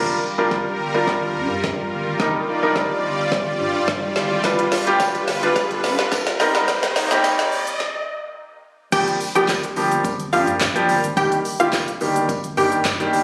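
Heard as if captured on a phone in a club, with a thin, high-passed tone and a wet, roomy reverb around it, this carefree, summery dance-pop fragment moves at 107 BPM in a straight 4/4. A clear, polished baby grand piano sits up front with accompaniment chords over a round, sine-like sub bass, both pumping with sidechain compression, while a lush, detuned supersaw pad holds bright sustained chords through the build-up. A deep house kit layers a deep kick, woody snare, smooth hats, shaker, handclaps and crash through a drum fill, with a faint, jingly tambourine far back in a large room, and an electronic riser rises in the background from 2.5 seconds. The pad drops out at 7.8 seconds for a brief stop, and the drop lands at 8.9 seconds, where a punchy, wave-folded unison pluck carries a mellow melody through tape echo. The harmony moves through Gm7, Ebmaj7, G7 and Cm7 before returning to Gm7 and Ebmaj7 for the drop.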